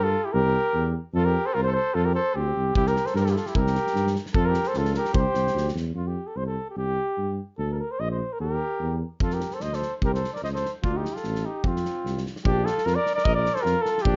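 Festive and wild, this short cut from a longer Balkan brass band piece moves in a brisk two-beat metre with a light swing. A mellow flugelhorn carries the melody up front, its smooth top set off by a slapback echo, while a mellow tuba with light vibrato anchors the bass just as prominently. A mellow trumpet with light vibrato plays a second line beneath them, dropping out between 5.7 and 8.4 seconds before returning. A loose acoustic drum kit of kick and snare comes in at 2.8 seconds, with a punchy kick, medium-tuned snare and rolled-off top in a pumping room sound, pausing briefly before rejoining at 9.2 seconds. The brass keeps a classical polish amid the revelry, and the whole band sits in a moderate small room with a soft, dark high end.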